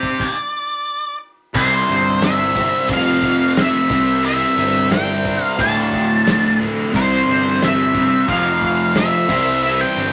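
Psychedelic rock at 89 BPM with a mysterious, dark mood, this excerpt opens on a Csus2 chord and stops from 0.2 to 1.6 seconds before moving through Cmaj7, F and Dm7. An up-front octave-fuzz lead guitar carries the melody over a double-tracked fuzz guitar riff coated in phaser, a very quiet, mellow string-machine cello pad with slow attack and ensemble chorus, cloth-damped thuddy drums with a tight kick and rolled-off top, and an overdriven fuzz bass that enters at 1.5 seconds, set in a moderate studio room.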